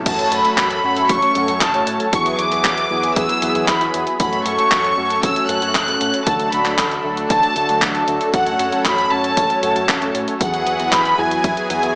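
Lush, detuned sawtooth pad chords and mellow synth brass stabs open this italo disco excerpt together at the start, both treated with chorus, in a melodramatic, danceable F# minor at 116 BPM in a straight 4/4. Within a fraction of a second a studio violin section enters up front with the melody, its bowed, floating tone carried high on tape echo above the synths. Underneath, a picked electric bass runs through an envelope filter for a dark, round line, while a punchy, tape-warm analog kick drives the beat alongside a gated 80s digital drum machine supplying crash cymbal, handclaps and hi-hat with gated reverb. The harmony cycles through F#m, Eadd9 and D, giving the passage a brooding, dramatic pull. A moderate plate reverb and digital ambience surround the mix, which has a small-speaker character and is cut from a longer piece.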